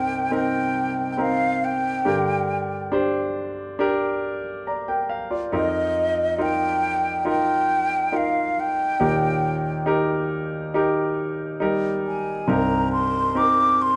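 A wet studio reverb with an RT60 of 0.8 seconds gives this live, one-room pop performance a glossy sheen. It is a melancholic, emotional piece in C minor at a slow 69 BPM in straight 4/4, heard here as a fragment of a longer work. A silver concert flute carries the melody within a range of Eb5 to D6, close-miked and up front, its breathy, mellow, hollow tone shaded with vibrato and tongued notes. Beneath it, a concert grand piano plays the accompaniment from C2 to Bb5, sounding clear, polished and present, with a deep bass and a short sustain. Both instruments play together from 0.0 to 14.0 seconds as the harmony moves from Cm7 through Gm, Bbsus4/F and Eb before returning to Cm7 at 12.5 seconds.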